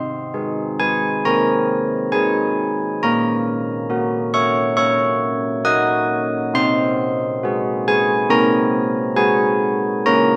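Serene yet festive, this classical tune for church bells unfolds at an unhurried, straight pace in a short cut from a longer piece. A solo carillon rings out up front across its full 10.4 seconds, its bronze tone struck by an iron clapper and carrying a distinctive minor-third overtone that sits forward in the midrange. The moderate reverb of a recital hall lends the bells an open, resonant halo as the harmony moves from Ab/C through Gb/Bb to Ab7/C.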